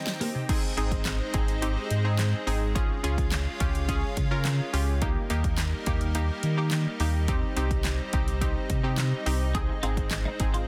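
A short drum fill opens this upbeat, summery dance-pop excerpt over a glassy, crystalline wavetable pluck and a lush, detuned unison pad, both carrying chorus and sidechain pumping. At 0.5 seconds the drop arrives, with a punchy, layered electronic kit up front and a deep, sine-and-triangle sub bass with octave entering at 0.8 seconds, pumping beneath the chords. A bright, twangy twelve-string electric guitar riff with analog chorus flashes in briefly and returns at 9.5 seconds, all within a dense, heavily limited modern master and digital ambience.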